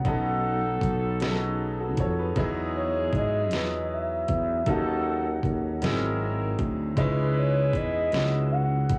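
Over a slow 6/8 pulse at 52 BPM, this late-night, sultry R&B excerpt sets an electronic kit's knocking kick, deep snare and metallic hats beside a growly, punchy fretless bass, while a clear baby grand with audible action noise moves through B9, Emaj7, D#m7b5, G#7b13 and C#m7, vintage horn stabs add tight jazz-style colour, and a mellow, detuned sine lead glides on top with portamento, vibrato, chorus and tape echo, the lead, piano and horns all carrying a cassette-tape grain within a small home room's light reverb.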